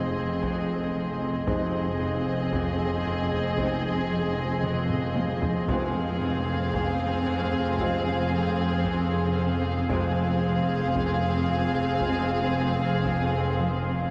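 Muted, con sordino strings open this ominous, mysterious suspense cue in F minor at 57 BPM, with the violin sections carrying a veiled melody and second line over a lush viola background, a cello and double bass floor, a glassy, ethereal glass harmonica holding sustained chords and a ringing, fingerpicked concert harp riff low in the mix. Very quiet taiko drums enter at 0.4 seconds with a fill at 4.6 seconds, a distant, dark French horn section and a barely audible trombone section hold sustained chords from 1.5 seconds, and faint timpani sound as the harmony settles from Ab over F to F minor at 5.7 seconds. The whole piece sits in a cavernous cathedral reverb with a heavily compressed, radio-like sound, and it is cut from a longer work.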